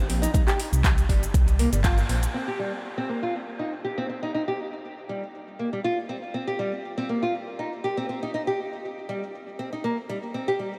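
An up-front, fingerpicked nylon-string guitar spins lush-chorused, tape-echoed arpeggios over a Cm7 chord in this spiritual, driving afro house excerpt, with a rumbling, detuned saw bass pumping beneath it until 2.3 seconds and a deep electronic kick thumping from 0.3 to 2.0 seconds through a band accent at 1.8 seconds, while filtered handclaps, metallic hi-hats and shaker from an afro-pop kit carry on through a dreamy wash of huge ambient reverb.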